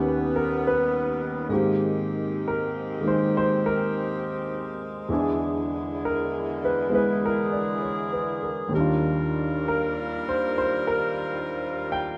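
Wistful and melancholic, this jazz ballad sways in 4/4 with a relaxed swing on the eighth notes. A clear grand piano sits up front, carrying the accompaniment across a span from Eb2 to G5, its notes ringing with long sustain. Behind it, a saxophone section holds warm ensemble chords, colored by light vibrato and a smooth top. The harmony moves from an altered Eb7 into Abmaj9, then shifts to E7 at 5.1 seconds before settling on Ebmaj9 at 8.7 seconds. Moderate studio reverb lends a gentle bloom, and the tuning sits at A4 = 438 Hz, in a passage cut from a longer piece.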